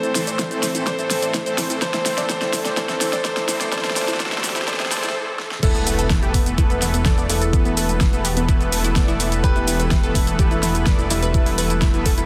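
Progressive house at 126 BPM in a straight 4/4, driving and expansive, moving from A minor to Esus4 in this excerpt cut from a longer piece. The opening build-up runs to 5.6 seconds, with filter sweeps on the bright, brilliant grand piano melody, the very quiet, warbling vintage unison pad and the mellow background pluck arpeggios, while a pop drum kit with a fat snare and overdrive plays a fill and a very quiet electronic riser and impact rises beneath. A brief stop precedes the drop at 5.6 seconds, where a fat, wave-folded analog bass with tube saturation enters on E1 and an impact lands. Throughout, a smooth, soft-attack supersaw plays stabs, and both it and the punchy pluck carry cassette tape colour, tape echo and sidechain pumping, while the piano trails a digital delay. An overdriven, knocking electronic kick, high-pass filtered and re-recorded in a small room, anchors the groove in a dense, heavily limited modern master with light reverb and digital ambience.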